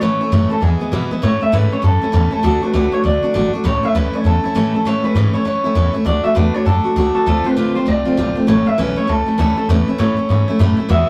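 A rough rehearsal-room recording with tube saturation and moderate studio ambience frames this rowdy, rollicking rockabilly excerpt in A major at 198 BPM with a swung 4/4 feel, where a twangy, slightly broken-up electric guitar through a small old amp carries the melody over a full-bodied, up-front picked steel-string acoustic guitar and a woody pizzicato upright bass, all three playing throughout the 11.1 seconds as the chords move through A, D and a Dm7 before returning home.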